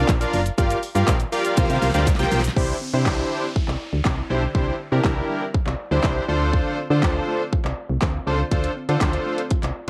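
A big, bright polysynth and a solid FM bass open this euphoric, upbeat dance-pop excerpt in straight 4/4, both pulsing with sidechain pumping. The bass is punchy, round, dark and digital, with a fast attack that quickly decays, while the fat, detuned sawtooth-and-square polysynth sits up front with a sub octave and a cassette-tape tint. A layered electronic pop kit of punchy kick, fat snare, handclaps, hi-hat and shaker is also forward in the mix and carries the same cassette character, and its drum fill from 1.6 to 2.6 seconds leads into the next section. At 2.6 seconds a very quiet, soft pluck joins with gentle, chorused, wave-folded arpeggios, alongside a faint electronic downlifter that runs until 6.5 seconds. The harmony moves through Bb, Gm7 and C7sus4 before settling on Cadd9 and Dm7, all wrapped in light reverb with the homespun feel of a cassette home recording.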